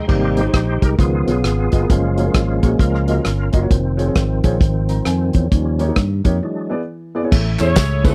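Uptempo gospel with a soulful, uplifting swing, this short excerpt is carried by a reedy tonewheel organ that solos through fast rotary speaker and chorus vibrato over a dark, woody upright piano with audible action noise, a warm fingered electric bass and an up-front soul drum kit with a fat snare and dark cymbals. A clear, punchy saxophone section with tape echo sounds briefly at the start and returns at 7.6 seconds, after a break at 6.4 seconds, while tambourine and handclaps join at 7.3 seconds as the harmony shifts to Amaj7. The sound is dry and close, like a 1970s studio recording.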